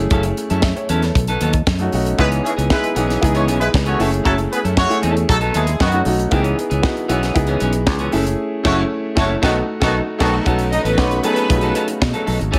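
Sultry and driving, this disco excerpt rides a tight funk drum kit with a high-tuned snare and a dark, round fingered bass up front, with a bright, twangy clean electric guitar drenched in lush chorus and an open concert grand piano filling out the chords; punchy yet distant horn stabs arrive at 2.2 seconds, the band hits an accent from 8.4 seconds, and a smooth bowed violin section with vibrato slips in briefly at 10.7 seconds.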